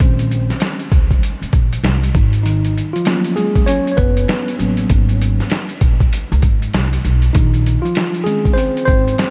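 A haze of vinyl crackle, light reverb and digital ambience frames this short, smoky cut from a longer jazz-hop piece, set at 98 BPM in 4/4 with a loose 16th-note swing in Bb phrygian. Up front, a gritty, tape-warm boom bap sampler-style drum kit, compressed and pitched down, delivers a thumpy kick, a medium-tuned snare and hi-hat across the whole passage. Beneath it, a woody pizzicato upright bass with steel strings holds the low end until 9.1 s. The worn, slightly out-of-tune tine electric piano, clean and direct, sits forward and carries a solo over a cool, unhurried progression that drifts from Bbm11 to Abm11 at 2.1 s and returns to Bbm11 at 7.3 s. The result is a relaxed, late-night head-nod groove with a lived-in, dusty character.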